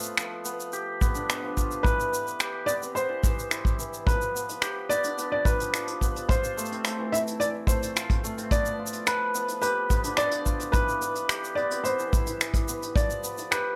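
Delicate and pastoral, this folktronica piece moves at 108 BPM in G mixolydian, with a shimmering hammered dulcimer playing delay-touched arpeggios from the first moment while a soft brush kit of finger snaps, hi-hat and shaker sits distant yet up front in a roomy studio space. A tight kick joins at 1.0 seconds, and at 1.8 seconds a felt-muted upright piano enters with an intimate, mellow melody, its short sustain and audible action noise set close and echoed by delay. The chords circle between G7, Cmaj7 and Fmaj7 under light reverb, the recording cut from a longer piece.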